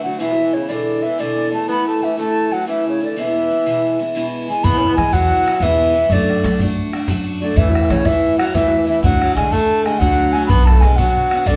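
A bright 9/8 slip jig in lively Celtic folk style, this excerpt sets a pure, wooden baroque flute with a soft attack and vibrato up front, a distant, roomy tenor saxophone second line in classical style, and a bright, fresh-stringed picked parlour guitar, joined at 4.6 s by a dark, thumpy pizzicato upright bass on gut strings and an open, boomy bodhran in the background, all captured as a band playing live in one room under a wet large studio reverb.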